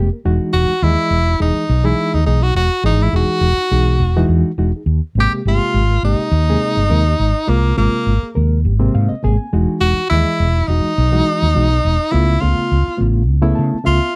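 A bright, punchy tenor saxophone solos up front with a forceful, vibrato-rich tone over a reedy electric piano shimmering with fast tremolo and a round, woody fretless bass in this funky, soaring jazz fusion excerpt at 104 BPM, moving from Emaj9 to Abmaj9 and back before landing on Db7alt, with piano fills at 8.7 and 13.3 seconds under light reverb.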